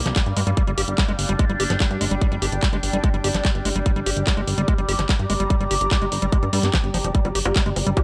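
A light reverb and digital ambience surround this intense, alien psychedelic trance excerpt in G minor, moving at 146 BPM in a straight 4/4. A tight electronic kick sits up front, joined by a garage drum kit of bongos, handclaps and warm hi-hats, both heard in a small room. A plucky analog bass, punchy and funky with a fast attack, holds the low end up front from F1 to G2. Above it, an overdriven acid bass plays a squelchy, gritty riff with a resonant filter sweep across the whole 8 seconds, colored by dub echo and sidechain pumping. An overtone-sweeping drone sustains bright chords with chorus, phaser and built-in reverb. Further back, an ethereal, airy pad adds a full-bodied texture with ensemble chorus, breathing with the same sidechain pumping.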